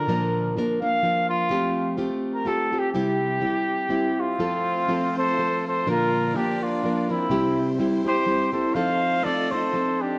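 In a swung three-beat time with a loose rubato feel, this proud, festive stretch of mariachi-style Mexican folk opens with a roomy, classically styled trumpet carrying the melody over a full-bodied, fingerpicked nylon-string guitar whose fresh strings let a little finger squeak through. At 4.2 seconds a second trumpet with a soft attack and light vibrato adds a lower line, and at 4.4 seconds a rich, biting violin section joins with focused, bowed sustained chords. The whole passage sits in a dark, warm production with a moderate scoring-stage reverb, and it is cut from a longer piece.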